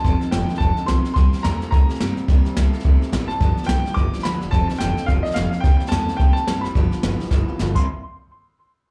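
Heard through the venue's PA at a live gig, with a touch of club reverb and little else in the way of room sound, this rowdy, upbeat rockabilly cut from a longer piece moves with a light swing. The upright bass sits up front, plucked and thumpy with a woody steel-string tone. Above it, a warm upright piano carries the melody high in its range, its long sustain doubled by slapback and tape echo. An electric guitar through a small old amp plays a twangy, slightly broken-up riff bathed in lush chorus, while a picked dreadnought acoustic guitar adds bright, full-bodied accompaniment from the background. A brushed jazz kit with a boomy kick, medium-tuned snare, hi-hat and crash drives the F7, C7 and G7 changes, rolling into a fill from 7.3 seconds before the band drops out at 7.9 seconds.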